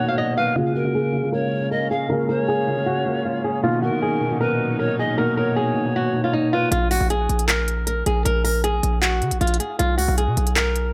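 A fingerpicked flamenco guitar carries the melody throughout this melancholic, dark trap excerpt at 156 BPM in a half-time feel, joined at first by an airy, reedy pan flute second line, a mellow dark baby grand piano and a bowed string section playing sul tasto chords in the background. Analog delay colors the guitar, flute and piano, while low-pass filtering shapes the guitar, piano and strings during a filter sweep. At 6.7 seconds the piano, flute and strings stop as a punchy, hard-hitting 808-style bass and an overdriven electronic trap kit with crisp hi-hats and handclaps take over beneath the guitar. The echo-heavy mix sits in light small-room reverb, moving over Bbm7 and Bmaj7 harmony in Bb phrygian.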